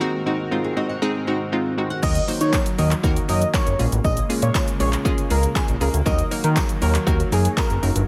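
A fat, detuned analog bass pumps up front from 2.0 s in this energetic dance-pop excerpt, joined by a deep house kit with a punchy, overdriven kick, handclaps, hi-hat, shaker and crash, a jingly tambourine, and a bold, octave-doubled lead with chorus and vibrato, while a hollow, bouncy square pluck and a shimmering pulse-width pad carry the chords throughout and a fingerpicked flamenco guitar with delay plays only in the opening 2.0 s break.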